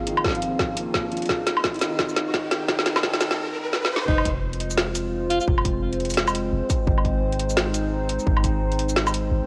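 Half-time drum and bass with a dark, tense mood, where a moody, detuned analog pad, a felt-muted upright piano with audible action noise and a background riser build over an up-front kit of woody snare and metallic hats plus a distorted electronic kick, until the drop at 4.1 seconds brings a short, bright alto saxophone line with vibrato and a deep, sine-toned 808-style bass, the whole mix sitting in a lush hall reverb on a home cassette recording.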